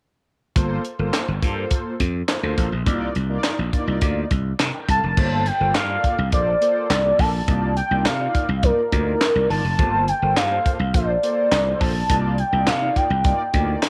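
A straight 4/4 groove at 104 BPM drives this danceable, funky early-eighties boogie funk fragment in G minor, where a tight acoustic funk kit with a high-tuned snare, handclaps and crash sits up front beside a bright, growly, punchy slap bass, while mellow, round, detuned synth brass with chorus and vibrato sustains Gm11 and Cm11 chords throughout, joined at 4.9 seconds by a velvety, wave-folded synth lead with chorus that takes up the melody, set in a small room with light reverb.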